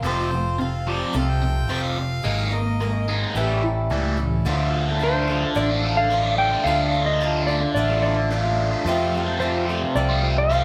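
A folk rock and heartland rock excerpt with an open-road, warm mood, where a biting, double-tracked overdriven guitar riff with phaser and a round, dark fingered bass sit up front over a bright, boxy picked acoustic guitar with finger squeak, a clear harmonica line with light vibrato plays from 0.1 until 3.1 seconds, and at 4.5 seconds a reedy, very quiet hand-pumped harmonium breathes sustained chords before a clean, slide-fingered lap steel takes the melody at 5.0 seconds, all in the moderate reverb of a large studio with the band playing live in one room.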